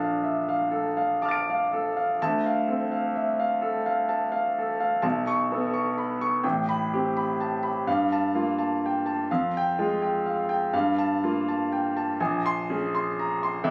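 Impressionist classical solo piano in a serene, hazy mood, taken from a longer piece and flowing with rubato in 6/8 at 42 BPM in dotted quarters, as a clear, smooth concert grand with deep bass, a vintage tone and long sustain sits up front across a range from A1 to D7, drifting through extended harmonies from Bbmaj7 and Dm7 to Am9, Gm9 and a closing Bbm9, all captured on a phone in a room with light club reverb and compression.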